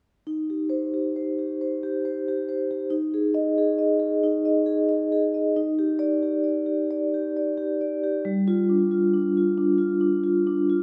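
A solo vibraphone played with soft mallets carries this short excerpt from a contemporary classical piece in Eb major, its mellow, airy tone ringing up front with a medium motor vibrato from 0.3 to 10.8 seconds. The mood is warm and playful, moving at a rubato 90 BPM in 4/4 and spanning G3 to Eb5, with harmonies shifting from Eb6 through Ebsus4 to Ebmaj7 at 5.6 seconds, where a second section begins. A wet recital hall reverb lends the metallic bars a lingering glow.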